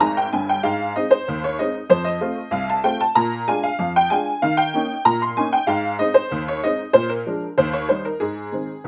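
A straight 2/4 pulse at 95 BPM drives this playful, jaunty ragtime fragment in Ab major, cut from a longer piece and tuned slightly low to A4 = 439 Hz. A lone honky-tonk upright piano, detuned and jangly with a short sustain, sits up front across a range from G1 to C6, opening with a quick fill in the first 0.6 seconds before moving through chords such as Ab, F, Bb7 and Eb. A slapback echo colors the piano, while the dry, open-air sound carries little reverb.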